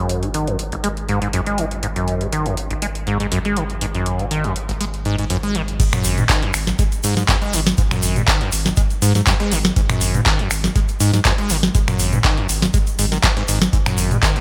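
A squelchy, resonant sawtooth acid bass riff opens this trippy, driving acid house excerpt at 121 BPM, pumping over a thick, saturated sine sub bass. A booming, dry analog drum machine joins almost at once, with its tonal snare, metallic hats, handclaps, finger snaps, toms and crash. At the drop at 5.8 seconds, a deep, up-front electronic kick arrives with a very quiet, gritty breakbeat-style kit and a grainy egg shaker in the background, all within a bright 1980s-style digital sheen and light reverb.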